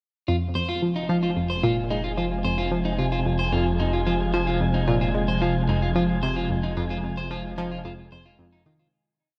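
A bright, wave-folded analog pluck sits up front, cycling a 12-step sequenced riff that drifts against the bar in this expansive, hypnotic piece of ambient space music. A slightly broken-up electric guitar picks its own 7-step arpeggio loop through analog delay, while a swirling, phased pad fades in beneath, holding mellow chords over a deep, round bass that sustains the root. From 1.0 s an airy, wind-like noise texture holds a single high note in the background, and the echo-heavy chamber mix fades out from 6.0 s.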